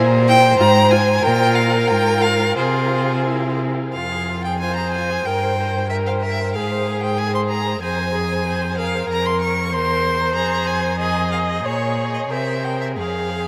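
Bathed in a huge, wet reverb that places the quartet in a vast, echoing space, this stormy, dramatic classical-period string quartet movement moves quickly in 2/4 with a rubato feel, and the excerpt is cut from a longer piece. A clear, smooth violin carries the melody up front from 0.3 s, while a second violin plays a distant, even second line, a focused viola fills in the accompaniment, and a close, rich cello anchors the bass, each bowed by one player with vibrato. After a short opening passage, a new section begins at 3.9 s and runs to the end.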